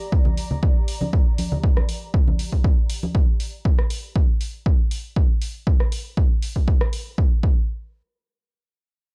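A punchy analog kick sits up front in this late-night, deep house fragment, carrying the 119 BPM 4/4 pulse with a slight swing on the 16ths and the close feel of a small room. Around it, a drum machine adds hi-hat and rim click lower in the mix, while bright, closely captured congas struck with hard hands add acoustic colour. A soft, breathy pad of detuned layers with a noise edge holds a G minor chord between G4 and Bb5, its slow attack and chorus shimmer pumping with sidechain compression. The pad fades and stops with the congas at 3.1 s, leaving the kick and drum machine to carry the groove. The chord drops away at 7.2 s and the kick ends at 7.6 s, all set in a dark, warm production with a digital ambience.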